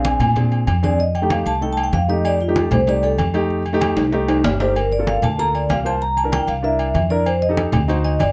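Sunny and danceable, this short cut of Afro-Cuban jazz moves at a brisk 191 BPM in 4/4 in F mixolydian, with a soft-mallet vibraphone taking a mellow, close and dry solo across the whole passage, its tone full, metallic and ringing with a medium motor vibrato. Underneath, a dark baby grand piano comps intimately up front with audible action noise and short sustain, while a woody pizzicato upright bass with steel strings sits forward over chords moving from Bb7 and F7 to Gm7 and C7. Ringing agogo bells and metal-shell timbales sound in a live room, low-tuned congas played with hard hands sit in the background, and a drum fill arrives at 4.0 seconds, all under light reverb.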